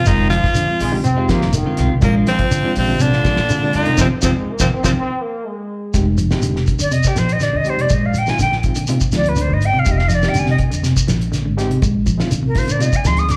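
A raspy, forceful tenor saxophone leads this defiant, intense afrobeat excerpt, carrying the melody up front over a punchy background trombone line and a clear trombone section that joins at 0.8 seconds, with a clean, dark picked guitar adding stabs behind them. The horns and stabs drive a band accent before dropping out, and at 6.8 seconds a breathy, bright concert flute takes over for an unsteady, tongued solo in straight tone, lifted by plate reverb, slapback echo and tape echo. Underneath, a hollow-body electric guitar plays fingered arpeggios, a woody, growly pizzicato upright bass holds the low end, and a cloth-damped drum kit with a fat snare and tight kick thuds alongside a grainy, dry shekere. An overdriven, reedy electric piano adds gritty accompaniment through a combo amp, shimmering with fast tremolo. The whole performance sounds like a live gig heard through a club PA, with the room's reverb around the band as the harmony moves between Fm7 and Bb chords.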